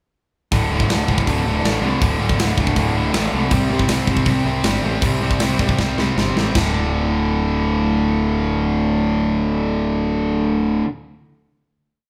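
A tight metal drum kit drives this short, rowdy punk rock piece, its medium-tuned snare, tight kick, hi-hat and bright splash cymbal sitting up front in a fast punk groove. Two distorted electric guitars hammer out driving eighth-note power chords, moving from D5 to C5 and back, with the tighter of the pair placed more forward in the mix. Underneath, a fuzz-soaked picked electric bass growls through punchy eighth notes, its overdriven tone adding grit to the low end. A drum fill at 5.8 s launches the band into a final D5 chord at 6.5 s, which the guitars and bass let ring out to the end at 10.9 s after the drums fall away. The whole piece has the energetic, rowdy feel of a band playing live together in a large studio room with a moderate reverb.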